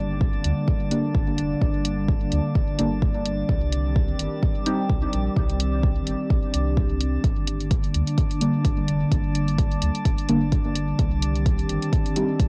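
A lo-fi, cassette-recorded haze in a small booth frames this nocturnal, meditative dub techno excerpt in G minor at 128 BPM with a light swing, where a warbling tape-like pad holds sustained chords over a soft, round sub bass, a glassy drifting texture floats above, an up-front tape-warm kick enters at 0.2 s followed by a dry analog hi-hat at 0.4 s, and a dark, detuned chord stab with phaser and dub echo sounds from 0.9 to 4.8 s and again from 8.4 s as the harmony moves between Gm and Cm.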